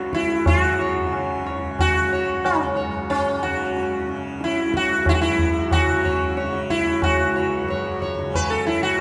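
Set in a straight five-beat cycle, this brief fragment of Hindustani classical music carries an introspective, solemn mood. A plectrum-plucked sitar sits up front with a round, buzzing tone and shimmering sympathetic strings, carrying the melody over a bright, softly plucked tanpura drone set low in the mix, while a low-tuned, ringing tabla with a small-room character enters at 0.1 seconds and stops at 8.6 seconds. A long, cathedral-like reverb fills the hall around the sitar, tanpura and tabla.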